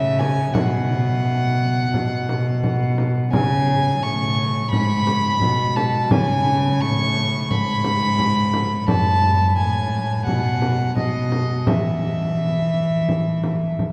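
A reedy, gut-string violin carries the melody up front in this festive, stately renaissance-style consort dance in 4/4, over a rich, close bowed cello bass in period style, with a small, bright frame drum entering at 0.2 seconds in the background, while a wet cathedral reverb places the listener further back in the room.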